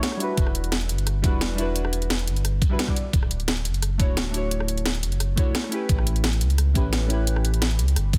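Warm and lush, this short liquid drum and bass cut at 174 BPM in D major moves through Em9, Dmaj9 and A9 as a soft, dark chord stab with chorus, phaser, delay and a filter sweep sits beneath an overdriven, up-front electronic kit of cracking snare, rim click and bright hi-hats, joined at 0.4 seconds by a gritty, thumpy sampler-style kick and a round, deep sine sub bass in a dry, dense, heavily limited mix.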